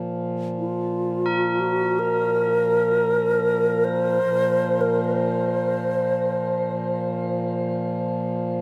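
An up-front, close-miked bass flute carries the melody in this haunting piece of free-time world meditation music, its airy, expressive tone marked by vibrato and tongued notes between F4 and C5. The flute enters at 0.6 seconds and falls silent at 6.9 seconds, trailed by shimmer reverb and tape echo. Beneath it, a reedy, breathing pedal harmonium holds a full drone from Bb2 to F3 across the whole passage, heard close and dry. From 1.3 seconds, tubular bells struck with a plastic hammer ring out on a single bright, solemn Bb4, softer in the balance and bathed in their own shimmer reverb. A huge ambient reverb with an 8.0-second decay surrounds the music, giving this short section, cut from a longer piece, a spacious, meditative stillness.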